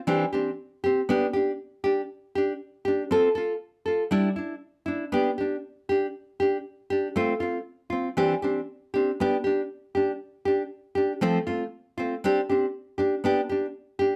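Highlife in G mixolydian at 119 BPM, this sunny excerpt features a lone nylon-string guitar, fingerpicked and up front, with a bright classical tone and audible finger squeak against a moderate studio reverb. A light swing on the sixteenths carries the guitar through chords such as Cadd9, G5, F and Em7/G, shifting into a new section at 5.1 seconds. That section moves through G5, F, Cadd9, G5, F and Csus2 before settling on G at 13.2 seconds.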